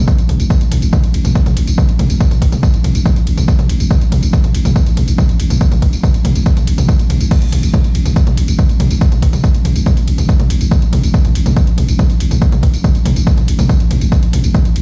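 A growling 808-style bass opens this dark, industrial cut of driving peak-time techno at 0.0 seconds, sitting on A1 with a buzzy, sine-based tone, a fast attack and a decaying tail, shaped by overdrive, a low-pass filter and sidechain pumping. At 0.1 seconds an electronic kick drum arrives, dry, punchy and overdriven, placed up front and loudest in the mix, holding a straight 4/4 pulse at 141 BPM. Alongside it, an analog drum machine supplies crash and ride cymbals, hi-hat, tambourine and toms, its dry, overdriven hits sitting further back than the kick. The tuning rests at A4 = 439 Hz, and the whole stretch runs as one section cut from a longer piece, lasting until 14.8 seconds. Light reverb and a large studio space give the sound the feel of a big system playing in a bare room.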